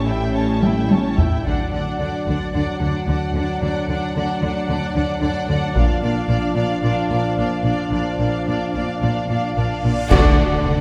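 Cinematic, epic orchestral film score with an adventurous, majestic mood, where a dark, lush violin melody rides over a rich second violin line, close viola accompaniment, mellow distant French horn chords and a bass of clear cellos and soft-attack double basses, while a heavy-stick taiko ensemble enters with a fill at 0.6 s, bright cymbals, clash cymbals and concert bass drum join at 5.8 s, and a huge reverse cymbal and impact lead into a full-band accent at 10.1 s with very quiet dark trombones, smooth distant strings and a vintage solo trumpet stab, all set back in a wet scoring-stage reverb.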